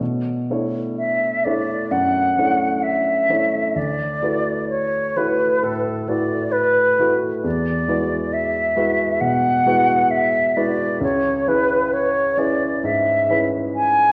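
A clear, polished baby grand piano opens this mysterious, hazy impressionist excerpt in B minor at 66 BPM, moving freely in rubato through Bm11, D69, Eadd9 and C#m7 harmonies. At 1.0 seconds an airy, expressive concert flute enters up front with tongued notes and vibrato, carrying the melody over the piano's accompaniment. A wet recital-hall reverb and the worn, warbling pitch drift of old cassette tape give the whole recording a hazy, aged quality.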